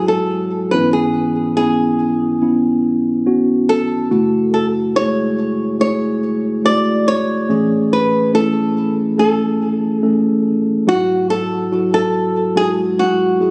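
Pop with a heartfelt, emotional mood, this short passage cut from a longer piece pairs a fingerpicked flamenco guitar melody with a mellow, clean tine electric piano accompaniment, both playing throughout and sitting up front, with the piano sounding direct. The acoustic guitar has a warm tone with audible finger squeak. The chords move from Eadd9/G# through C#m7/G#, F#m7 and Amaj7 before returning to Eadd9/G# at 10.9 seconds, and the phone recording carries a small room ambience with light reverb.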